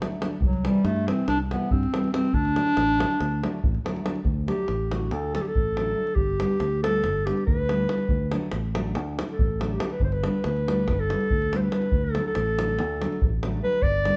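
Set in a large studio with moderate reverb, this wild, festive Balkan wedding-band excerpt in 9/8 at 282 BPM and D mixolydian opens with a thumb-plucked, full-bodied nylon-string guitar and a deep, up-front davul, joined at 0.4 s by a round, punchy fingered electric bass and a mellow, smooth-topped classical clarinet that takes an up-front solo from 4.2 s over chords moving among C, D and G.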